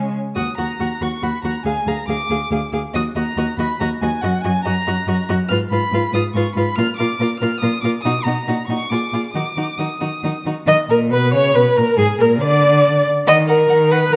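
This quick classical-period movement for string quartet runs at 140 BPM in 3/4, set in Eb minor with a restless, urgent mood, and is cut from a longer piece. A rich, smooth first violin carries the melody high above the ensemble, while a warm second violin sits in the background with a focused supporting line. The viola, clear and even, plays accompaniment up front, and the cello, rich yet focused, anchors the bass with equal presence, all four bowed with vibrato by single players. The harmony circles Eb minor through diminished chords and a Bb7, then breaks off at 10.7 seconds for a bare moment before the opening material returns and settles back on Eb minor at 13.3 seconds. A moderate recital hall reverb and a dark production give the quartet a shadowed, enveloping sound.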